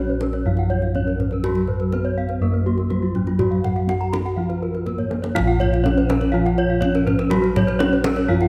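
This Balinese gamelan excerpt moves at a straight 123 BPM in 4/4, with a brilliant, shimmering mood. A mellow bronze metallophone carries the melody between Gb3 and Gb4, struck with padded disc mallets for a soft, airy tone whose paired tuning sets up shimmering beats. Beneath it, a second metallophone played with a horn mallet gives a bright accompaniment in the narrow band from F3 to Bb3. Two more metallophones spin arpeggios with wooden mallets: one close-miked, dry and full, reaching up to Cb6+35c, and another ringing from F4 to Bb5 between 0.1 and 8.0 seconds. Up front, round, dark bossed gongs hold the bass as the loudest part, while a deep kendang, played with hard hands in a small-room sound, adds a short fill at 5.0 seconds. A moderate scoring-stage reverb lends the ensemble a sense of space.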